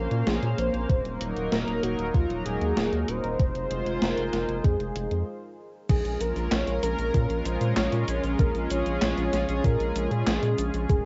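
An overdriven, thumpy electronic kick drives this cinematic synthwave excerpt in Bb minor at 96 BPM, entering at 0.9 s alongside a gated 80s digital drum machine with gated-reverb snare, handclaps, hi-hat, shaker and crash, a round, deep analog bass, a shimmering chorused pulse-width pad pumping under sidechain, and a thick, detuned unison lead melody carrying cassette tape echo, all captured as a lo-fi home cassette recording in a small booth with a brief stop at 5.3 s before the second section.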